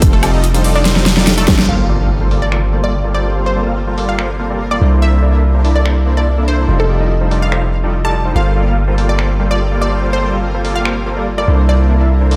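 A dreamy mix soaked in plate reverb and digital ambience frames this lush, half-time future bass excerpt. Huge, detuned supersaw chords carry the riff through a low-pass filter, sidechain pumping and a diffuse ambient delay, while a deep, mellow 808-style bass with tube saturation sits up front beneath them. A punchy layered electronic kick drives the opening drop until 1.6 seconds, alongside a big-room kit with a huge snare, metallic hats, finger snaps, woodblock and crash, its parts dulled by low-pass filtering and re-recorded in a small room. A very quiet electronic impact arrives at 1.7 seconds as the harmony moves through Gm11, C13 and F9. Over this, a detuned unison pluck with a noise layer and a filter sweep carries the melody through a diffuse delay. A bell-like tine electric piano adds very quiet, clean accompaniment, and a shimmering, ethereal granular pad with an octave-up shimmer, chorus and phaser holds sustained chords in the background.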